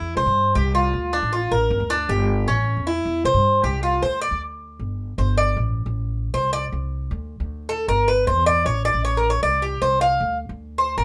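In a straight 4/4 feel, this nostalgic, sultry Cuban son and guajira excerpt pairs a bright, metallic tres picking up-front arpeggios on its double strings, some of them octave-doubled, with a dark, thumpy pizzicato upright bass on gut strings, all in a light reverb, before the tres takes a solo from 4.0 s through the close at 11.0 s over chords such as Gm6, Aadd11 and Dm7.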